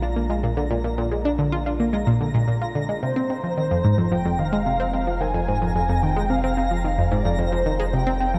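This mysterious, expansive stretch of ambient, sequencer-driven space music in F dorian at 110 BPM opens with a nasal, detuned analog pluck riff up front, colored by chorus, phaser and delay. Alongside it sit a deep, wave-folded analog bass and a twinkling granular texture that fades in with an octave-up shimmer and its own built-in reverb. At 3.0 seconds, as the harmony moves from Bb to F5, a breathy, flute-like synth lead enters with vintage warble, ensemble chorus and delay, all bathed in a huge wet reverb with a 7.5-second tail and dark, warm production.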